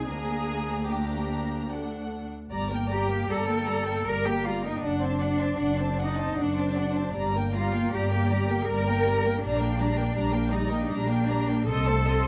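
Classical slow romantic movement for string orchestra in G minor, solemn and yearning, moving in a rubato 3/4 at around 72-83 BPM, in a passage cut from a longer piece that starts on Gm/D and settles into its second section at 2.5 s. Every section plays con sordino: the muted violins carry a lush, vibrato-rich melody over a second violin line with soft attacks, while the violas fill in a veiled, smooth-topped accompaniment. Cellos and double basses sit up front with a dark, lightly vibrated bass, all bathed in a moderate recital-hall reverb.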